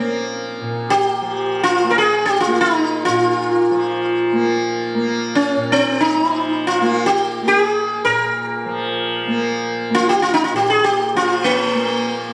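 Hindustani classical music in free time and raga kafi on Bb, this introspective, solemn excerpt sets an up-front sitar, bright and buzzing with shimmering sympathetic strings, carrying the melody between Bb3 and Bb4 over a softly plucked tanpura drone from Bb2 to Bb3 that rings with its own glittering, rasping glow for all 12.3 seconds, heard in a moderate reverberant room with a phone-captured, compressed sound.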